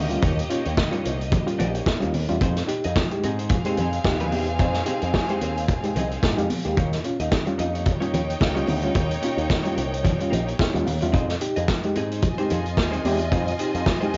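A lo-fi home cassette recording with light reverb and a dulled top end frames this glamorous, sultry disco excerpt, which sways on a lightly swung groove between Eb7 and Fm7. A gritty, saturated vintage drum kit with a punchy kick sits up front over a picked electric bass shaped by an envelope filter, while a reedy electric piano, lightly overdriven and pulsing with fast tremolo, carries the accompaniment. A lush, bowed string section with vibrato supplies the second line, a dark, clean semi-hollow guitar stays in the background, and very quiet, bright, high-tuned congas join at 0.2 seconds.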